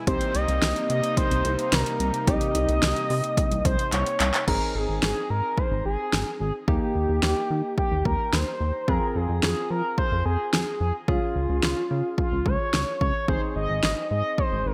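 Synth-pop in Ab major at 109 BPM, this nostalgic, bright excerpt opens on a brassy analog pad and soft, round electric-piano-like keys over Cm7, with the pad stopping at 4.4 s just as a drum fill from 3.9 s leads into a second section moving through Ab, Eb, Fm and Db. Up front, a smooth, nasal synth lead with vibrato, chorus, shimmer reverb and digital delay carries the melody, backed by a dark, glossy chorused synth bass with a plucky filter. A punchy, overdriven deep house kit with a fat snare, handclaps, metallic hats and gated reverb sits prominently in a lush hall, giving the whole a bright 1980s-style digital sheen.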